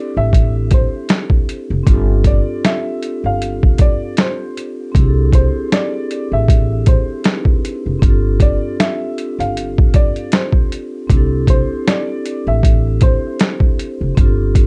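A dark, worn upright piano carries the melody from the start, slightly detuned and intimate with audible action noise, trailed by tape echo and plate reverb, while a ringing, metallic vibraphone played motor off accompanies in a boxy small room. This cosy, nostalgic lo-fi hip hop cut in C major sits at 78 BPM with a swung feel, moving between C69 and G7sus4 chords as a woody pizzicato upright bass joins at 0.2 seconds and an up-front, pitched-down boom bap kit with a thumpy kick, medium-tuned snare and hi-hat enters at 0.3 seconds, coated in gritty 12-bit sampler texture. The piano drops out at 13.4 seconds, leaving vibraphone, bass and drums to close this dark, mellow excerpt with light reverb.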